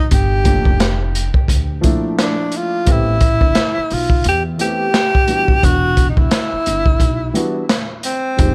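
Nocturnal and mellow, this short jazz-hop excerpt from a longer piece moves at 87 BPM in 4/4 with a swung sixteenth-note feel. A breathy, close-miked tenor saxophone carries the solo melody up front, its soft attack and vibrato trailed by an analog delay. Beneath it, a dark concert grand piano with short sustain and a smooth, vintage tone supplies the accompaniment, while a woody pizzicato upright bass anchors the low end from 0.1 seconds. The crunchy breakbeat kit of kick, snare and hi-hat sits forward in the mix, saturated and gritty with a tight kick, a medium-tuned snare and a rolled-off top. The harmony moves from Gm9 to Am9 at 2.9 seconds and settles on Em at 5.6 seconds, all wrapped in a small room ambience.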